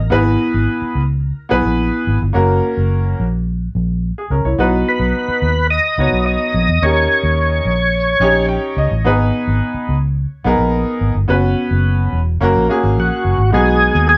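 A muted electric bass opens this joyful, uplifting slice of uptempo 1960s-style soul, its dark, round, punchy tone sitting up front, and a clear, woody upright piano joins almost at once with a slightly detuned, long-sustaining accompaniment. The two carry a straight, steady groove through a chord sequence that moves from E over G# through F# and B to a D#7. At 4.9 s an overdriven tonewheel organ takes the melody, gritty and thick with key click, percussion, chorus vibrato and a slow rotary speaker. The organ drops out at 8.5 s as the piano plays a short fill, and the harmony turns through G# minor and an F# suspended chord. The organ returns at 13.0 s to close on a B6 chord, and the whole band sounds as if it is playing live together in one room with a moderate studio ambience.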